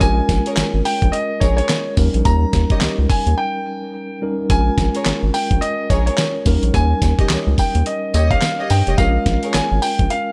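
Bouncy and confident, this new jack swing R&B excerpt in Bb dorian moves at 107 BPM with a swung 16th-note feel, where a warm concert grand piano carries the melody over a mellow tine electric piano, a round, deep analog bass and a gritty, thumpy sampler-style soul drum kit of handclaps, hi-hat, snare and tambourine, while a dark, woody string section adds soft bowed stabs from 0.5 seconds, all in a dry room with a short break at 3.4 seconds over Bbm7 and Eb7 chords.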